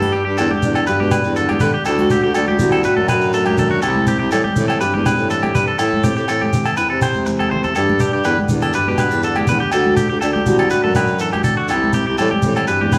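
A straight 4/4 groove at 122 BPM drives this joyful, carefree highlife guitar band clip in G major, cut from a longer piece, with the chords cycling G, D, C and Am. Ringing, high-tuned congas played with soft hands sit in the background alongside ringing agogo bells that join at 0.4 seconds, while a grainy, mellow shekere enters at the same moment. Up front, a bright, twangy electric guitar at the edge of break-up picks arpeggios between F#4 and C5, and a fingerpicked nylon-string guitar supplies a deep classical accompaniment complete with audible finger squeak. The low end comes from a breathy baritone saxophone playing the bass line with a soft attack, vibrato and an intimate, whispered jazz tone. A drum fill at 7.1 seconds marks the turn back to G, and the whole band plays live together in one room, bathed in a wet large studio reverb.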